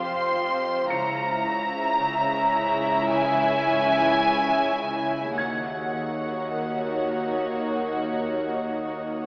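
A dark violin section sits up front with a slow, uneasy melody, bowed sul tasto with light vibrato and a soft attack. Beneath it, a rich chamber violin section carries a second line, a viola section fills in the accompaniment, and a glassy FM pad holds ethereal, chorused chords over a Fsus2 that soon moves to C#m and then D#m7 at 5.4 seconds. Cellos with a pure, floating tone and a double bass section in the background anchor the low end, while a concert harp rings out a fingerpicked riff from further down in the mix. At 0.9 seconds a brilliant, worn grand piano enters high up with long-sustaining texture and audible action noise. The ominous suspense cue moves at a slow 51-55 BPM in 4/4, and the whole ensemble sits in a wet scoring-stage reverb, heard from further back in the room with a thin AM radio colour.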